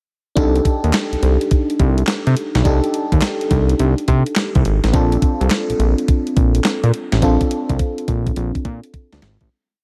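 A fat, thick analog bass anchors this confident, slick slice of new jack swing R&B, its detuned sawtooth tone evolving under a filter sweep as it plays a bouncy, swung synth-funk line with muted ghost notes and chromatic approach notes. Up front beside it, a clean 12-bit digital drum machine delivers a hard-swung, sampler-style beat with a thumpy kick, a medium-tuned snare layered with handclaps, and hi-hat. An FM electric piano holds rootless chords with a glassy, bell-like attack and a noise layer, its decaying tone colored by chorus and phaser. The harmony moves from Cm69 to Bbmaj9 across a single verse, with all three parts entering together at 0.4 seconds under light reverb. From 7.2 seconds a drum fill plays as the piece fades out, finishing at 9.5 seconds.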